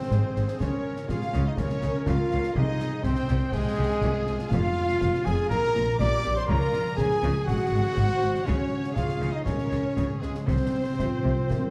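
Determined and swashbuckling, this heroic adventure film cue moves at 122 BPM in a straight 4/4, cut from a longer piece. A clear symphonic violin section carries the melody from the background, while a very quiet, hollow flute section and a soft-attacked chamber violin section trace second lines in the same register, over a rich, focused viola accompaniment. Mellow French horns hold tight sustained chords and a solo trumpet adds stabs with light vibrato, as a ringing, fingerpicked concert harp spins arpeggios across a broad range. Underneath, an intense cello section and a lush double bass section form the bass, and concert snare, bass drum and bright clash cymbals sit back in a live room. Articulate timpani struck with hard mallets appear from 2.6 to 5.2 seconds and return for a fill at 10.5 seconds, and a dark, distant solo clarinet slips in during that fill at 11.0 seconds. Chords such as Ab7, Db, Fm and Bb lead to a closing Csus4, all set in a moderate scoring-stage reverb with a dusky production.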